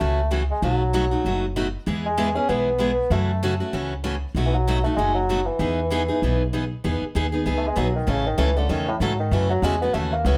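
Lightly reverberant and up close on guitar and bass, this playful, charming jazz manouche swing fragment sets a mellow, distant bassoon melody with light vibrato over brightly picked steel-string acoustic guitar and woody pizzicato upright bass on gut strings, the bassoon taking a classical-style solo from 6.8 s as the harmony moves from F#m7 and B7 toward Emaj7 and A.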